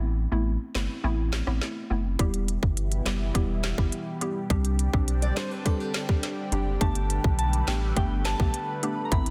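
A dense, heavily limited modern mix with light reverb and a digital ambience carries this sultry, tough dancehall fragment, cut from a longer piece. A hollow, bouncy square-wave pluck with chorus opens the track over a deep, punchy sub bass whose pitch-drop attack sits up front. At 0.8 seconds a tight electronic island pop kit comes in, pairing a firm kick and woody snare with smooth hats, rim clicks and handclaps in a tape-flavored tone. A lush, thick detuned unison pad joins at 2.5 seconds, colored by chorus and phaser and pumping against the sidechain. The rest unfolds over Em, Csus2 and Gadd9: a small, bright fingerpicked nylon-string guitar with audible finger squeak plays brief delayed arpeggios, and from 6.8 seconds a soft, pure FM bell adds a gentle second line high above, treated with chorus and delay.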